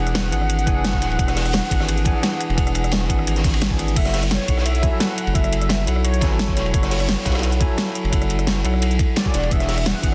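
A velvety, detuned sawtooth lead with chorus, vibrato and digital delay opens this dreamy, lush excerpt of liquid drum and bass at 173 BPM in F# minor, alongside a worn, slightly out-of-tune tine electric piano with delay and a deep, thick, saturated sub bass sitting up front, all moving from E9 to F#m7. A layered pop kit with a fat snare and crisp hats arrives almost at once, joined by a dark, gritty breakbeat kit with a high-tuned snare and rolled-off top, and a knocking electronic kick lands at 0.7 seconds. The whole band hits an accent at 3.6 seconds before the drop repeats in a small room, finished with a dense, heavily limited modern master.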